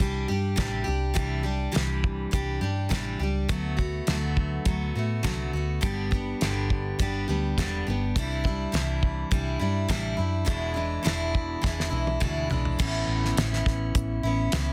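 A straight 4/4 pulse at 103 BPM drives this short folk rock and heartland rock clip, cut from a longer piece, with a jangly, hopeful mood. A damped 70s drum kit sits up front with a dry, fat snare and tight kick, working across hi-hat, toms and crash cymbal, and it plays a fill from 11.6 to 12.8 seconds. A bright, full-bodied picked steel-string acoustic guitar, a dreadnought also placed up front, carries the accompaniment through a progression of Cadd9, D6, G, Cadd9 and E7. Underneath, a hollow-body short-scale electric bass, fingered and amped, adds a dark, round low end. After the fill, the music moves into a new section at 12.8 seconds on an Aadd9 chord, all three parts playing throughout, and the sound is a dense, heavily limited modern master with light reverb.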